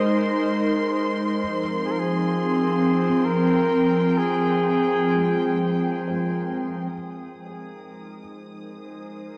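A slow, straight 3/4 pulse at 65 BPM carries this peaceful, serene ambient excerpt in Ab major, where an airy, breathy pad with chorus holds sustained chords up front throughout, moving from Ab to Fm7 before settling on Abmaj7 at 6.9 seconds. A vintage-toned flugelhorn with light vibrato fades in on a classical-style solo melody through a diffuse ambient delay until 6.0 seconds, while a thick-felt, muted upright piano with audible action noise fades out on soft arpeggios in the background, stopping at 8.2 seconds. A lush, bowed symphonic violin section adds a high, smooth-topped texture that also fades, all set in a wet cathedral reverb with a dark production.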